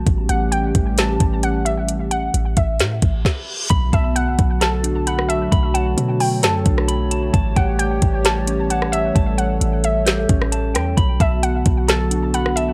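Hazy and spacious, this atmospheric cloud-rap excerpt moves at 132 BPM in a half-time feel in B minor, built on a dark, detuned analog pad with chorus, a deep, boomy 808-style bass and a smooth R&B drum kit whose soft kick, woody snare and metallic hats sit up front. A warbling, lo-fi pluck carries the melody from 0.3 seconds through chorus, phaser and analog delay, while a background reverse cymbal and impact mark a brief stop at 3.2 seconds. A clean, compressed electric guitar then enters at 3.7 seconds with delayed arpeggios over chords alternating between A7 and Bm7, all in a dry, gritty digital ambience.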